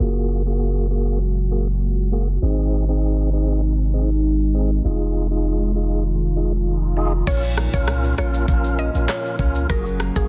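Bouncy and tough, this short dancehall cut opens on a dark, moody bed, as a deep, warbling pad of detuned saw and sine layers pumps against the beat under chorus and its own reverb, while a fat tonewheel organ with light overdrive, key click and a fast-spinning rotary speaker plays accompaniment. A punchy sine sub bass with a pitch-drop attack sits up front from the start, and a filter sweep runs through the opening passage as the chords move from Gbadd9 through Ab and Fm7. At 7.3 seconds the groove fills out: an electronic, produced drum kit arrives with a knocking kick, smooth hi-hats, handclaps, rim clicks, shaker and crash, its snare softly clipped, joined by maracas in the background. A woody, round FM pluck with a bright edge carries the melody through chorus and delay, while a full-bodied nylon-string guitar is fingerpicked in arpeggios behind it, finger squeaks audible. The whole thing has a dense, heavily limited modern master with a low-pass filter and a digital ambience.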